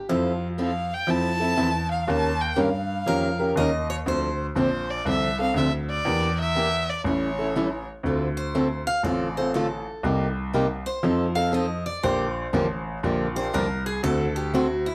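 A bright, boxy parlour steel-string guitar opens this bittersweet, virtuosic slice of acoustic jazz manouche, picking a second line over a warm archtop guitar's accompaniment and a clear baby grand piano holding down the bass with short, natural notes. From 0.6 seconds a dark, woody violin carries the swinging melody with vibrato, set in plate reverb. At 8.4 seconds the steel-string guitar returns for a solo with fresh strings and audible finger squeak, all in a moderate studio room.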